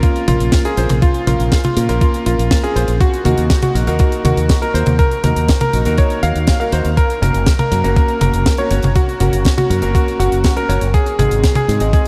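Italo disco at 121 BPM with a bittersweet, nostalgic mood, built on a thumpy, sampler-style electronic kick sitting up front alongside a dry, airy funk kit with a high-tuned snare, hi-hat and toms. A punchy fingered electric bass with an envelope filter and tube saturation enters at 0.3 s, while a vintage electric grand piano with chorused unisons carries the melody and an intimate concert grand, its action noise audible, plays stabs, both pianos fed through delay. The chords move from Bbm to Ebm, Gb and Ab, and the whole mix is soaked in a huge, dreamy ambient reverb.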